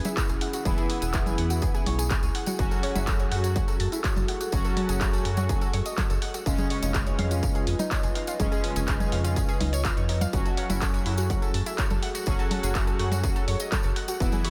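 A distorted electronic kick drum sits up front in this dark, cinematic melodic techno excerpt at 124 BPM in F# dorian, its layered thump carrying the sound of a large room. A round, deep analog bass pulses with sidechain pumping beneath it, while a techno drum kit of congas, handclaps and hats adds pumping percussion, joined by a jingly acoustic tambourine. A warbling, dusty pluck spins arpeggios up to A6 through chorus and diffuse ambient delay, its lo-fi tone touched by ring modulation and a filter sweep. Bold, fat analog synth brass stabs enter at 0.7 seconds, and a moody, detuned analog pad holds sustained chords with a slow attack. The harmony moves from E6 to F#madd9, then C#7/E# before returning to F#madd9, all set in light reverb.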